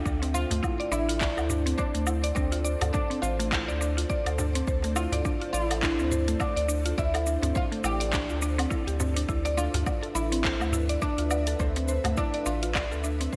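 A mellow, fretless oud carries the melody from 0.3 s, its plucked tone roughened by vintage 12-bit sampler grit and delay, above a woody FM mallet pluck whose chorused, delayed arpeggios circle a single Dm7 chord in D dorian. This hypnotic, meditative organic downtempo cut, taken from a longer piece, moves at 104 BPM in 4/4 with a 16th-note swing. It rests on an overdriven electronic kick, an afro-pop kit of handclaps, dark hi-hat, shaker and woodblock in gated reverb, a very quiet, close clay darbuka, and an up-front, round analog bass with sidechain pumping, while an ethereal, airy pad of detuned sustained chords sits in the background with ensemble chorus, tremolo and its own pumping, framed by a bright 1980s-style digital production with light reverb.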